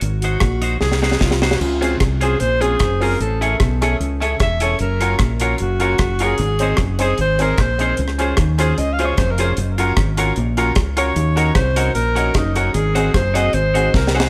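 Ska with a bouncy, upbeat straight feel, this short cut from a longer piece features a breathy, whispered alto saxophone soloing throughout with dub echo over a round, punchy fingered electric bass and a dry reggae drum kit with a high-tuned snare and tight kick that fills around 0.8 seconds, while a clean, scooped electric guitar also carrying dub echo accompanies and a slightly detuned upright piano with audible action noise and tube saturation adds stabs from 1.8 seconds, all playing live together in a large studio room.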